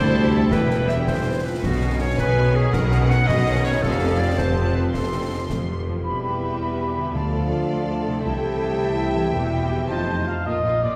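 Heroic adventure film score in 6/8 at 109 BPM, adventurous and heroic, with a woody, softly attacked violin section carrying the melody over a bright solo clarinet, lush background violins, smooth violas, ringing fingerpicked harp arpeggios, and a bass of focused cellos, double basses and a soft tuba that drops out at 6.0 seconds. Close, dry snare, bass drum and dark clash cymbals drive the opening until 5.7 seconds, after which an airy flute adds a second line while a roomy trombone section and mellow French horns add sustained chords, with a single timpani stroke at 7.2 seconds. A punchy trumpet stabs in up front at 9.9 seconds, all set in a reverberant scoring stage heard from further back in the room, in a fragment cut from a longer piece.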